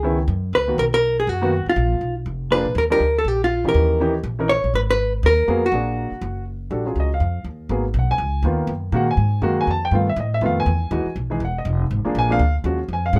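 Small-group swing and bop jazz with a smoky, late-night mood, where a dark, clean, hollow-body electric guitar carries the melody until 6.4 seconds over an intimate upright piano whose action noise is audible and a woody, plucked upright bass, all up front in a light reverb.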